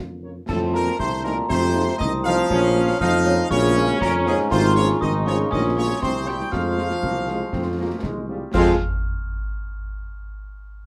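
This short cut from a military-style march for wind band opens with a dark, up-front tuba bass, clear trombone chords and a soft-edged euphonium second line in the background, with bright trumpets joining on the melody at 0.2 seconds over mellow, distant French horns. From 0.5 seconds a bell-like glockenspiel played with soft plastic mallets adds a ringing counterline, and a background kit of concert snare, dark clash cymbals and concert bass drum sets a resolute, martial 2/4 at 119 BPM in F minor. The harmony moves from F7 through Bbm and C7 back to Fm, all in a studio reverb with a moist, short tail.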